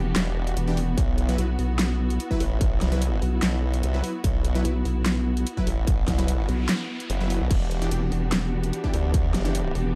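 Two up-front wobble basses, one nasal vowel-sweep and one sawtooth formant-sweep, both overdriven with chorus, drive this aggressive, chaotic half-time heavy wobble dubstep fragment at 147 BPM, backed by a distorted electronic kick from 1.0 s, a dubstep kit with huge snare, bright hats, handclaps and crash, punchy detuned supersaw stabs with tape echo, distant woody strings holding sidechain-pumped chords over Em7 and Bsus4, and a background noise sweep at 6.4 s, in a dark, dry mix.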